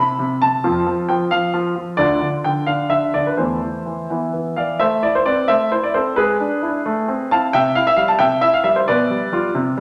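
A clear, present grand piano sits up front in this short excerpt of a classical-period sonatina in A minor, elegant and playful in a straight 6/8 at 88 BPM, spanning from D2 up to B5. The harmony moves from C and F through Dm and an E5 close before the second section opens on Am, passing through E7/G# and C to end on G7/B, which arrives at 8.9 seconds. A wet recital hall reverb surrounds the solo instrument with a 1.5-second tail.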